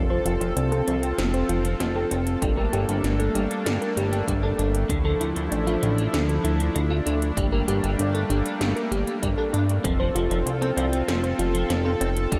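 Nostalgic, driving synthwave at 97 BPM, where a shimmering, chorused pulse-width pad holds sustained chords over a glossy, nasal synth bass pumping with sidechain, while a round, tine-like thumb-piano-like pluck runs tape-tinged arpeggios through delay and a filter sweep. A clean, twangy electric guitar riff with ensemble chorus and its own filter sweep plays alongside, 80s pad drums with a gated snare and metallic hats come in at 0.3 seconds, a punchy overdriven electronic kick joins at 2.4 seconds, and the chords move from F through Gmadd9 and Dmadd9, then back through Gmadd9 to F, in a dreamy mix soaked in huge ambient reverb.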